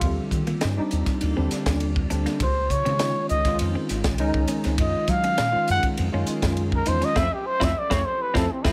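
Bright and funky, this short cut of electric jazz fusion features a breathy, whispered trumpet soloing up front with vibrato over chorused tine electric piano, a glassy, ethereal FM pad, a woody, round fretless bass, a crisp drum kit with a punchy kick and high-tuned snare, and clean electric guitar stabs entering at 0.5 seconds, with the band hitting an accent from 7.2 seconds as the chords move through lush major ninths.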